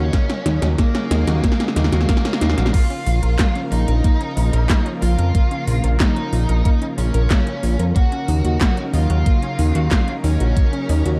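Synthwave at 92 BPM in Bb minor, nostalgic and nocturnal and cut from a longer piece: a dark, picked octave-fuzz lead guitar with digital delay carries the melody over a lush, detuned unison pad with chorus, phaser and sidechain pumping, a round analog pluck playing arpeggios with chorus and delay, and a fat sawtooth bass up front, while overdriven 80s electronic pad drums with a gated snare and metallic hats open on a fill that runs to 2.7 s beside a knocking electronic kick with overdrive, as the chords move from Ebm7 to Bbm and back to Ebm7 at 8.0 s in a lightly reverberant, warm production.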